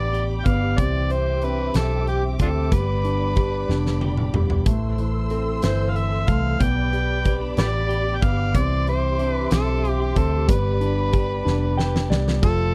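An overdriven harmonica carries the melody up front, its gritty, amplified tone colored by light vibrato, tongue slaps and scooped notes in a jazz-inflected solo voice. This is a romantic, heartfelt pop ballad in a straight six-eight, drawn from a longer piece and moving through G, Cadd9, Am and G/B chords. A concert grand piano supplies intimate accompaniment with audible action noise, deep bass and long sustain, while a clean, compressed electric guitar picks arpeggios in the background through a spring reverb. A dark studio string section holds lush, woody sustained chords, and a foam-muted fingered bass sits round and punchy beneath. A huge arena drum kit with a fat snare and punchy kick plays fills at 3.7 and 11.5 seconds, the piano adding its own fill in that last moment, all captured in a dry, close 1970s-style studio sound.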